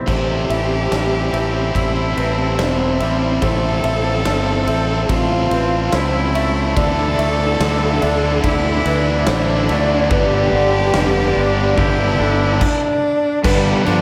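A dark analog pad with lush chorus, a felt-muted upright piano and a twangy electric guitar playing tape-echoed arpeggios open this brooding, cinematic post-rock excerpt in A minor at 72 BPM, before a biting, vibrato-rich bowed cello melody, a sludgy distorted guitar riff, growly up-front fuzz bass and a huge arena drum kit with punchy kick join at 0.1 s, a cranked stack guitar riff arrives in the background at 6.8 s, and the dreamy, reverb-soaked build-up moves through Am7, Fmaj7, Dsus2 and G to a stop at 12.6 s before landing on Gadd9.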